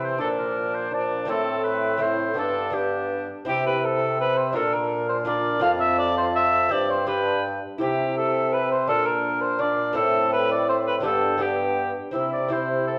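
A worn, warbling old cassette tape gives this recording a gently drifting pitch, and a wet recital hall reverb surrounds most of the wind players with a roomy, distant glow. It is a stately, festive renaissance-style consort dance in C major, moving briskly at 166 BPM in a straight triple metre, cut from a longer piece. All five parts play throughout the 13 seconds: a warm oboe carries the melody, while a mellow cor anglais with light vibrato sits up front as the second line. A dark bassoon fills in the accompaniment in the background, and a second, clearer bassoon anchors the bass. A delicate fingerpicked lute with gut double strings, some doubled at the octave, adds plucked accompaniment. The phrase is stated twice, with harmony circling through Bb, Am, G, C and F, a brief Gsus4 resolving to G, and a final return to C at 12.2 seconds.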